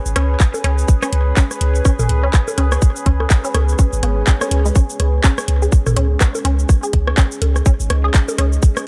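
Minimal techno at 124 BPM in 4/4, with a 58% swing on the sixteenths, this short excerpt cut from a longer piece feels cool and clinical, set in a dark production with little reverb. A tight electronic kick sits up front, joined by a garage kit of cabasa, handclaps and metallic hi-hats, while a booming analog drum machine adds tape-toned bongos, rim clicks and toms through a digital delay. A punchy sine sub bass with a pitch-drop attack and tube saturation holds the low end between G#1 and C#2, pumping against the kick. Above it, a juicy, squelchy blip pluck built from detuned sawtooth runs a riff from G#3 to C#5, colored by chorus, phaser and digital delay, with a moving notch and a short decay. A deep, moody pad with a slow attack and long release spans the full 8.9 seconds beneath everything, its mellow unison tone thickened by chorus and its own reverb, and a faint electronic swell surfaces in the background between 4.0 and 4.8 seconds.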